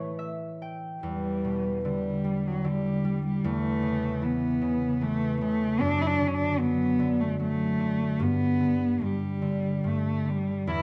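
Celtic slow air in a rubato, uneven-beat three, nostalgic and pastoral, cut from a longer piece, where a fingerpicked concert harp opens with a ringing fill as a single dark, bowed cello carries the melody up front with soft attack, vibrato and expressive portamento over the harp's acoustic accompaniment, all in light reverb.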